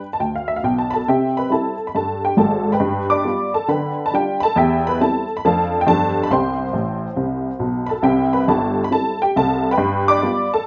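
A swung 4/4 at 138 BPM drives this exuberant, playful stride piano jazz in C major, a short cut from a longer piece. A lone honky-tonk upright piano, detuned, jangly and woody with a vintage character, sits up front across a range from G1 to D6, moving through changes like G, C, G7 and Dm/F before a fill from 6.7 to 8.0 s leads into a repeat of the opening section. Wet studio reverb surrounds it in a rough home-demo mix.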